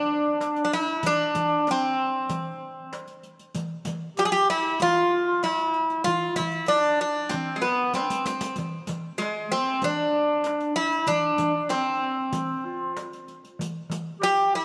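A bright, metallic, picked bouzouki carries the melody up front while a mellow, subtoned clarinet with light vibrato and scooped notes plays a softer second line. At 0.4 seconds a crisp, small metal-shelled darbuka played with soft hands joins, along with a close, dark-jingled riq, and a drum fill arrives at 7.9 seconds. It is a passionate, festive Turkish makam ensemble piece at 96 BPM in a straight 4/4, bathed in a wet plate reverb.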